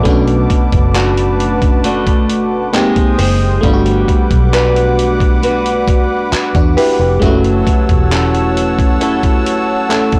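Late-night and moody, this contemporary R&B cut in B minor at 67 BPM pairs a glassy, bell-like FM electric piano with chorus and a smooth, detuned analog pad, while a small fingerpicked nylon-string guitar plays delayed arpeggios over a round, foam-muted electric bass with tube saturation and a gritty, up-front sampler-style kit of thumpy kick, hi-hat and handclaps, all moving through Bm7, G#maj7, Gmaj7 and F#m7 in a blown-out, overdriven mix with light reverb.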